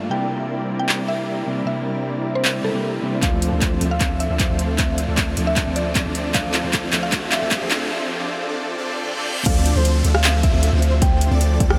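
Huge, lush supersaw chords carry this bittersweet, dreamy future bass excerpt in D minor at 154 BPM with a half-time feel, pumping with sidechain under a filter sweep alongside a woody, round mallet-like synth pluck melody, a dark, clean fingered electric guitar with 12-bit sampler grit, and an up-front pop drum kit with metallic hats, handclaps and rim clicks. A deep, sine-toned 808-style bass and a punchy, overdriven electronic kick arrive at 3.2 seconds as a build-up begins, with background risers and a reverse cymbal leading through a break at 7.9 seconds. At the drop at 9.5 seconds an airy, soft lead adds background arpeggios with vibrato and portamento, all within a dreamy mix soaked in a vast ambient reverb.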